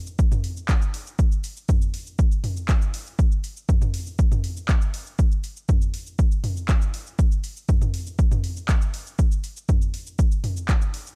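Cinematic and dark, this short techno excerpt at 120 BPM in a straight 4/4 pairs an up-front, overdriven electronic kick drum with a punchy analog drum machine of handclaps, hi-hat, shaker and toms, carrying its own overdriven grit, in a dry, shadowy production cut from a longer piece.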